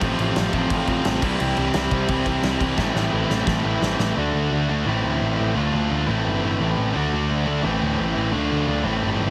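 This short punk rock clip opens with every part at once, three picked guitars and a fuzz bass all driving riffs in A minor at 173 BPM, aggressive and raw in mood. Up front, a tight, distorted guitar cuts through, while an overdriven, double-tracked guitar and a sludgy, warm one sit further back, and the punchy, fuzzed-out bass growls forward beside them. A loose acoustic drum kit, distant and roomy, with dark cymbals, a medium-tuned snare and a punchy kick, plays a fill from 2.8 seconds and drops out at 4.1 seconds. From 4.2 seconds the band shifts into half time, with the guitars and bass carrying on alone over a run of D, Am and Dm chords. Light reverb and a heavily compressed, radio-like finish give the whole clip a squashed, in-your-face sound.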